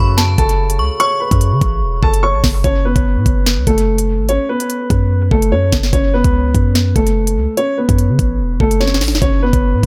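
Over a half-time drill beat at 146 BPM in F# minor, a tense, menacing passage cut from a longer piece sets a dark, boxy concert grand melody with dub echo against a deep, sine-toned 808 bass and an up-front electronic kit of knocking kick, sharp snare, crisp hats and rim clicks that enters at 0.2 seconds, while a metallic, inharmonic FM bell with chorus and a soft felt-muted upright piano in the background both fall away by 2.7 seconds, and a drum fill arrives at 8.8 seconds in an echo-heavy, nearly dry mix.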